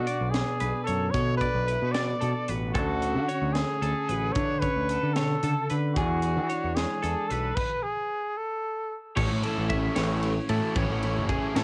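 Math rock and Midwest emo in a playful, bright 6/8 at 75 BPM in A major, this brief cut from a longer piece sets a clear, vibrato-tinged trumpet melody up front over two twangy twelve-string electric guitars, one picking accompaniment and one picking high arpeggios, both with a cassette-tape color, while a growling, overdriven fingered bass and a crisp, airy fusion kit with a high-tuned snare and punchy kick drive beneath. The harmony moves from Bm7 to E7 before a stop at 7.6 seconds, and the trumpet drops out at 9.0 seconds. At 9.2 seconds a cranked, double-tracked stack guitar enters with an overdriven riff on A6, all captured as a home cassette recording with light reverb.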